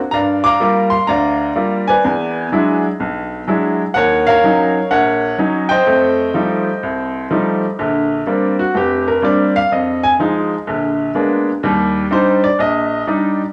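Solo jazz in Bb major at 125 BPM with a relaxed, sophisticated swing in 4/4, this fragment of a longer piece features a single bright upright piano, woody and intimate with audible action noise and long sustain, placed up front from 0.1 to 13.4 s, ranging from F1 to D6 over chords such as Gm7, E9, Bb69 and Bb7b9, with a tape-tinged, moderate spring-reverb sound from a home cassette recording.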